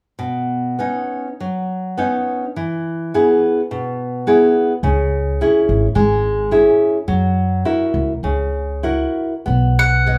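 A full-bodied nylon-string guitar opens the piece at 0.2 s, fingerpicked in a deep classical style, carrying a tender, nostalgic fado-style ballad in a loose rubato. Its accompaniment moves through Badd9, E, C#m and F#7 before returning to Badd9, giving the phrase a gentle sense of longing. At 4.8 s a pizzicato upright bass joins, its woody steel-string tone sitting low and close beneath the guitar. Just before the cut at 9.8 s, a mandolin enters on a single round, picked note on its double strings, placed up front as the melody voice. The three players sound like a band performing live together in one large studio, with a moderate reverb lending the intimate excerpt a soft sense of space.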